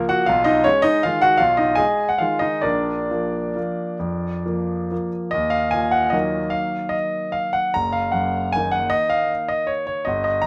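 A bright grand piano carries this short classical waltz alone, its brilliant, polished tone sitting up front with long sustain and audible action noise that lends an intimate closeness. The music is in Eb minor and 3/4, moving with a rubato feel at a tempo that drifts between 128 and 164 BPM, elegant yet bittersweet in mood. The playing spans a broad range, from Gb1 in the bass to Bb5 at the top, with harmonies passing through Abm/Cb and Bb before settling on Eb minor and Ebm/Gb. A new section arrives at 5.3 seconds, shifting the phrase onto the tonic minor. Light reverb gives the piano a touch of space, and the passage is cut from a longer piece, ending at 10.5 seconds.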